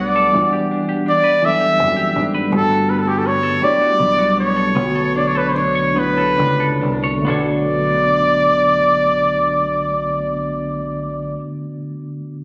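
Sultry and late-night, this slow six-eight R&B excerpt in B minor, at roughly 44-55 BPM and easing down between 2.5 and 7.3 seconds, sets a clear, close-miked flugelhorn with light vibrato and delay up front over a hollow-bodied, compressed semi-hollow electric guitar shimmering with harmonic tremolo, a mellow tine electric piano that alone lingers to 12.4 seconds, and a round, dark dub bass, all moving through Em7, Gmaj9 and Bm9 in a moderate studio ambience captured on a phone in the room.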